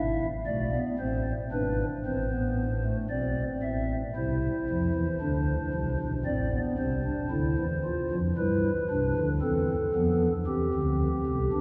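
A pipe organ on a stopped flute register carries this short passage alone, sitting up front with a soft, hollow tone and a tremulant that gives its mellow flute stops a romantic voicing. The music is a baroque-style three-part fugue in classical style, with an elegant, lively character over a steady, straight 4/4 pulse. The voices span from a deep G#1 up to E5, and the harmony moves from E/G# to Am before settling at 4.2 s into a new section that passes through C, Am and G and returns to C at 10.5 s. A cathedral reverb with a long 6.1-second decay surrounds the organ, letting each line bloom and linger in the vast space. Cut from a longer piece, the recording ends at 11.6 s.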